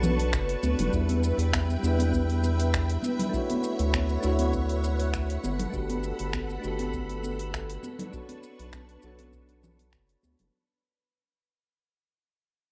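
A relaxed, sunny sunset chillout groove at 100 BPM opens at once with soft, detuned electric-piano-like synth keys through chorus and digital delay, a silky string machine colored by phaser and ensemble chorus, a round, up-front analog bass, a deep house kit of metallic hats, finger snaps and shaker, and bright, distant congas, with a deep electronic kick joining at 0.3 seconds. An airy, breathy wind-like texture drifts in the background from 1.8 seconds, bathed in its own reverb, as the chords move from Bm9 through Em7, Dmaj9 and Gmaj9 and back to Bm9. The mix is dry and rough like a home demo, and this cut from a longer piece fades out from 4.1 seconds.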